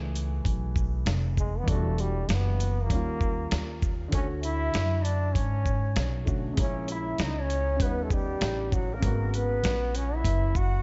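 A dark, vintage upright piano and a woody, pizzicato upright bass open this mellow, smoky jazz-hop excerpt together, the piano voicing a rootless F#m11 before moving through lush extended chords such as Em9, Dmaj7 and D#aug7. A gritty, compressed sampler-style drum kit joins almost at once with a thumpy kick, medium-tuned snare, hi-hat and shaker, sitting up front with the steel-strung bass in a relaxed, swung sixteenth-note feel. At 1.4 seconds a clear, punchy trombone takes the lead in a forceful jazz-style solo with light vibrato, its tone trailed by analog delay. A breathy concert flute enters at 4.1 seconds as a second line, playing with a straight, tongued tone and expressive phrasing, its highs rolled off. Light reverb and a dulled top end give the whole piece a hazy, late-night intimacy.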